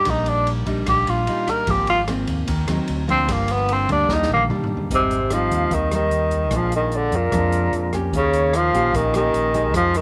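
A breathy, up-front tenor saxophone carries the melody in this sunny, sophisticated bossa nova excerpt at 149 BPM, soloing in Eb major with whispered subtone, scooped notes and vibrato. Fingerpicked nylon-string guitar with audible finger squeak, a round, amped fingered electric bass and a polished, small-room jazz drum kit with dark cymbals and a boomy kick support it, the drums playing a fill from 4.1 seconds. At 4.9 seconds the harmony shifts to Ab major and a distant concert flute adds a tongued second line in the background, with light reverb and studio ambience around the ensemble.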